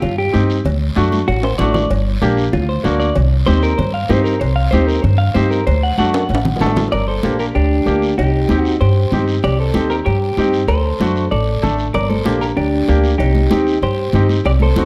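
Cumbia at a brisk 191 BPM in G harmonic minor, this short excerpt from a longer piece feels passionate and danceable, with a clean, picked electric guitar up front carrying the melody through spring reverb and slapback echo, taking a solo over the opening 6.9 seconds while a woody, thumpy gut-string upright bass anchors the low end. A bright upright piano with audible action noise adds intimate accompaniment from 0.3 seconds, and behind them sit damped congas struck with hard hands, ringing cowbell and timbales, and a raspy guiro, with drum fills arriving at 1.0 and 6.1 seconds. The chords cycle through Cm, D and Gm, with a D7 appearing later, inside a dark production and light reverb.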